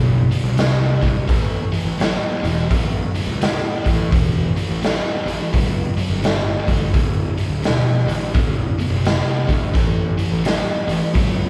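Swaggering and raunchy, this short cut from a longer piece sits in blues rock power trio and southern rock territory, with a loose, swung eighth-note feel in four. A thick, double-tracked electric guitar riff sits up front, its picked lines distorted and soaked in bright fuzz. Underneath, a picked electric bass growls in the background, overdriven and direct-amped with a punchy edge. The raw garage drum kit comes in at 0.3 s, an acoustic set of hi-hat, kick and snare that sounds saturated and gritty, with a forceful kick, a medium-tuned snare, a rolled-off top and the feel of a stone room. The band plays live together in a large studio with moderate reverb, and the harmony moves from D7 through third-less A7 and D7 shapes before settling on A.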